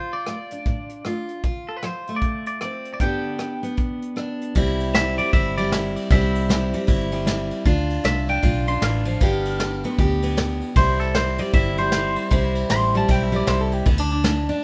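Honky-tonk and classic country at a brisk 155 BPM with a swung 4/4 feel in C major, this heartfelt, sunny excerpt pairs a twangy, clean electric guitar soloing through a phaser with an up-front, full-bodied picked acoustic guitar and a soft brush drum kit with dark cymbals and a punchy kick, while a round, foam-muted vintage bass joins at 4.6 seconds as the chords move from Dm, F and G to C, all in a dry sound.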